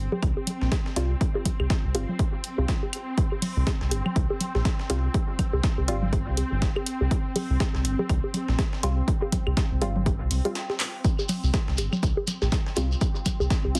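A heavily compressed, radio-like sound with light reverb frames this cool, hypnotic minimal techno excerpt at 122 BPM with a swung 16th feel, where a round, deep analog bass and punchy electronic kick sit up front, the bass pumping alongside a swarming, warbling drone on C4 that pumps too, while layered bongos, congas and claves trail dub echo, a punchy analog drum machine adds handclaps and hi-hat, a gritty, pitched-up sampler-style kit contributes high-tuned snare and filtered hats, muted, detuned dub chord stabs with phaser enter at 1.0 seconds, a brief break at 10.6 seconds carries a drum fill at 10.8 seconds, and a grainy, band-limited shekere joins at 11.0 seconds.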